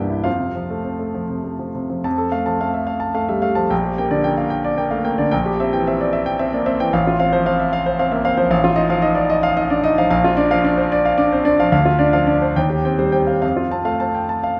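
A clear concert grand piano plays alone, up front and natural, its deep bass reaching down to A1 and its range extending up to A5 in this sparkling, brilliant virtuoso study in F major. The tempo sways with rubato at 66-76 BPM in 6/8, and after a brief opening section the music moves at 2.0 seconds into a longer passage that travels through Gm/Bb, C7/Bb and Bb before settling back on F at 13.4 seconds. A wet recital hall reverb lets each phrase ring, and the passage ends at 14.6 seconds, cut from a longer piece.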